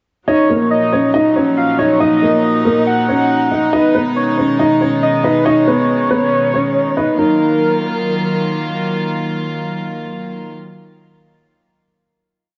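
Muffled and close in a small room with light reverb, this short, menacing trap piece at 139 BPM in a half-time feel and Eb minor opens at 0.3 s with a dark, boxy concert grand piano looping an octave-doubled melody through a low-pass filter and tape echo, while a round, wave-folded synth lead with chorus, vibrato and tape echo adds a sparse, looped counter-melody, and a distant, floating chamber string section bows sustained chords over Ebmadd9 and Abm before holding the final Ebmadd9 alone from 8.4 s to 10.5 s.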